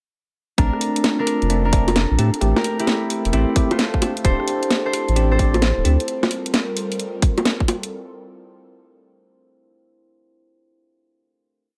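UK garage in a bouncy, late-night two-step groove at 131 BPM in G dorian, where a tight, tape-warm kick and a garage kit of cracking snare, skipping swung hats, rim clicks and bongos sit up front with a thick, saturated sub bass line, while a bell-like tine electric piano plays a close-voiced chord riff with delay, a ringing fingerpicked concert harp repeats a melody in thirds and sixths through its own delay, and an airy, breathy pad with chorus and sidechain pumping hums softly in the background over chords moving from Bbmaj9 to Gm11, the bass and piano stopping at 6.0 seconds.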